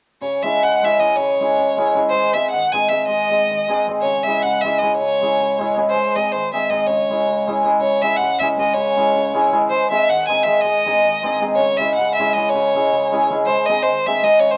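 This excerpt of Balkan folk music moves in an odd 5/8 metre with a straight feel and a virtuosic, restless mood. A single bowed violin carries the melody from 0.2 seconds, its tone rich and smooth, with vibrato and an even delivery. Beneath it, an acoustic cimbalom supplies hammered accompaniment in a lower register, its shimmering, ringing strings sitting up front alongside the violin. The harmony swings back and forth between C# minor and G# major chords, and the same section plays twice, with the second pass starting at 7.8 seconds. Light reverb and the soft haze of a home cassette recording frame the duo until both parts stop at 14.6 seconds, where the clip breaks off from a longer piece.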